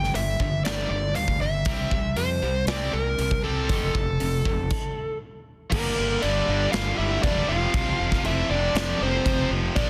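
Menacing, driving hard rock at 118 BPM, cut from a longer piece, where a dark, smooth overdriven lead guitar carries the melody up front with analog delay over a tight, bright distorted riff guitar, a round, punchy fuzz bass played with fingers, and a big-room acoustic drum kit with bright cymbals and a punchy kick. A stop falls from 4.7 to 5.7 seconds before a second overdriven lead line and another double-tracked overdriven riff guitar join at 5.7 seconds under a dense, heavily limited modern master with light reverb.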